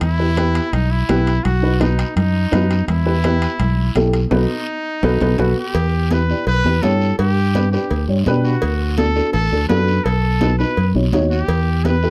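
A punchy trumpet with vibrato, a round fingered electric bass up front, high-tuned congas, a raspy guiro, and metal-shell timbales with cowbell open this fiery, driving cumbia excerpt, with a woody, slightly detuned upright piano joining just after, its action noise audible. After a band accent and a drum fill that lead into 5.8 seconds, the bright trumpet takes a solo over a shift in harmony, while the conga and timbale parts stay close and dry in the background. The mix has a dark, warm production with a modest small-room reverb.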